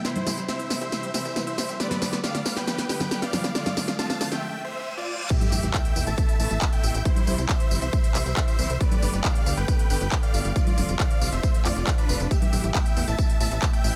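Uplifting trance at 137 BPM in A minor, euphoric and soaring, with a bright, detuned supersaw lead carrying the melody with delay and sidechain pumping over distant, lush symphonic strings, a tight, driving sawtooth sequencer bass, a layered dance drum kit with a huge snare, crisp hats, congas, handclaps, tambourine and crash, a very quiet, nasal analog pluck arpeggio that stops at 4.4 s, and a very quiet riser, reverse cymbal and sub drop, until a punchy electronic kick arrives up front with the drop at 5.3 s over a C, Gadd9, Dm/F, Asus2 progression.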